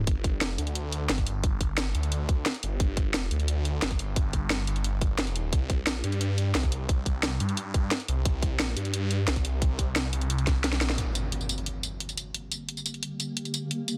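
Dark and mechanical, this dark technical drum and bass cut runs in a straight 4/4, driven by a tight, up-front electronic kick and a layered kit of hi-hat, tambourine and cracking snare over a thick, swirling detuned saw bass whose phaser and saturation give it a churning edge. Near 10.5 seconds a drum fill and band accent lead into an electronic impact at 11.0 seconds. At 12.0 seconds a tense, wave-folded swarming drone with granular texture, sidechain pumping and its own reverb enters alongside the kit, shaped by a filter sweep. The dense, heavily limited master keeps the dry mix pressed close and forceful.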